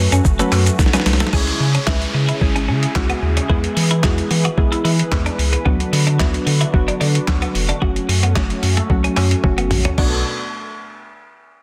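Driving and confident, this dance-pop excerpt in B dorian moves at 111 BPM in a straight 4/4, with a muffled, overdriven sampler-style drum kit up front, its thumpy kick, handclaps, shaker and toms joined by fills at 0.8 and 9.4 seconds. A deep, round analog bass, a gentle, decaying pluck and a smooth, detuned analog pad all pump with sidechain compression, while a bright, twangy twelve-string electric guitar plays a clean picked riff with a touch of chorus. A background downlifter sweeps through from 1.3 to 5.7 seconds as the chords move from F#m through C#m, E and Bm/D and back to F#m, settling on Bm7 under a dense, heavily limited master with light reverb.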